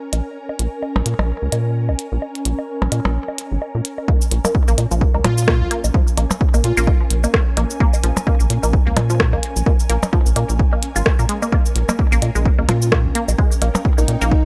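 A dry, close-sounding cut from a longer minimal techno piece in Bb dorian at 129 BPM with a swung 16th feel sets a sparse, cool mood: an ethereal, phased pad and a hollow, rubbery square-wave bass with tube saturation pump over a Bbm7 chord alongside overdriven clicky hats with rim clicks and shaker and layered woodblock and percussion blips carrying delay, until the drop at 4.1 seconds brings in a punchy, up-front electronic kick and a squelchy, detuned resonant pluck riff with phaser, tape colour and delay, while a soft, dreamy chorused lead drifts in at 5.2 seconds and returns at 12.7 seconds.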